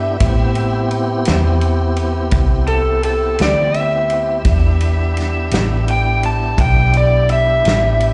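Heard through a club PA with light reverb and a dulled top end, this brooding, soulful slow blues excerpt in E minor moves at 56 BPM in 12/8 as a dark, overdriven slide guitar solos up front with slapback echo over a round, foam-muted electric bass, full tonewheel organ chords with key click, chorus vibrato and fast rotary speaker, and a natural small-room drum kit of punchy kick, snare and ride that enters at 0.2 seconds, with the harmony shifting from Am7 to Em7.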